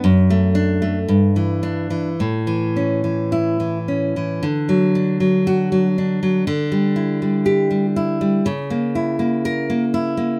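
A tender, nostalgic romantic piece for solo classical guitar, drifting in rubato at around 52-62 BPM in 2/4 and D major, tuned slightly high to A4 = 445 Hz. The fingerpicked nylon-string guitar sits up front with a bright, fresh-stringed tone, moving through chords such as D/F#, Em7/G and A before a repeated opening phrase turns toward C#m6 near 8.4 seconds. Light reverb gives this short excerpt, cut from a longer work, a gentle sense of space.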